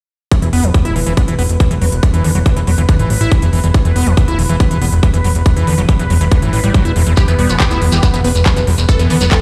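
Psychedelic trance with an alien, hypnotic mood, this excerpt is driven by a punchy, up-front electronic kick and a crisp big-room kit of handclaps and hi-hats, under a fat, saturated analog bass and a squelchy, gritty acid riff with delay and sidechain pumping. Above them, a bubbling stepped-filter texture holds sustained chords with chorus and pumping. At 7.2 s, a bright supersaw stab melody with phaser and tape echo arrives alongside a grainy, close shekere, all heard as if on a big sound system in a bare stone room.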